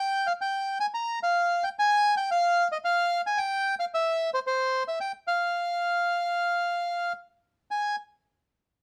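The rhythm is a rubato 4/4 around 111 BPM, so the pulse stretches and gives rather than marking a strict beat. This short fragment of a longer tango in F minor has a melancholic, tense mood. A solo bandoneon carries everything, playing in a high register between C5 and Bb5. Its reedy, warm tone sits up front, captured by close, detailed microphones with light reverb. The passage shifts near 7.7 seconds, and the bandoneon stops at 8.0 seconds, just before the recording cuts off.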